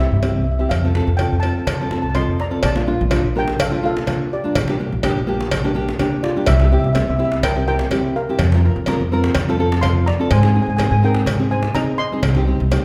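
A mellow, shimmering steel pan carries the melody of this sunny, bouncy calypso at 125 BPM in Bb major, over an up-front, fingerpicked nylon-string guitar, a woody, dark pizzicato upright bass, a distant cajon with faint snares and a close, dry cowbell, while a wet recital hall reverb sets the listener further back in the room.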